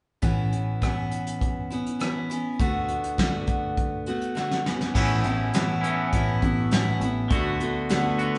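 Reflective and dusty, this short cut of folk rock and heartland rock moves at a straight 102 BPM in 4/4, with a bright, full-bodied jumbo acoustic guitar picking out Aadd9, D6 and Bsus24 chords up front over a round, foam-muted electric bass and a dark brush kit with a fat snare, punchy kick and dark cymbals. After a drum fill at 4.4 seconds, a clean, scooped twangy electric guitar riff enters at 4.9 seconds as the music moves into a new section. The whole band sounds played live together in one stone room with a moderate reverb and a softly rolled-off top end.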